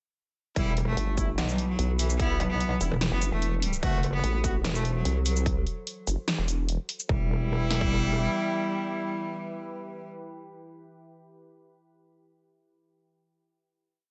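A metallic, distorted wobble bass drives this menacing, chaotic half-time dubstep piece, joined by a nasal vowel-sweep wobble bass, with both shifting their wobble speed through the drop that runs from 0.6 to 7.1 seconds. Two overdriven electronic drum kits pound out punchy kick, a huge snare and bright hats with shaker, while a bright bowed cello repeats an earthy riff with light vibrato and a close-miked brass section fires sparse, echoing chord stabs. Beneath it all an evolving, detuned wavetable pad morphs and warbles through a phaser in the background, carrying the closing chord from 7.1 seconds alongside the cello and brass.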